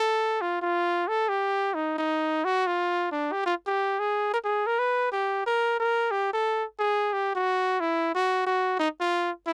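A dry, close 1970s-style studio sound with a faint mains hum frames this relaxed, warm jazz excerpt at 179 BPM in a swung 4/4, where a clear, punchy, close-miked trumpet plays alone up front with forceful jazz phrasing, moving into a new section at 5.4 seconds before the cut at 9.5 seconds.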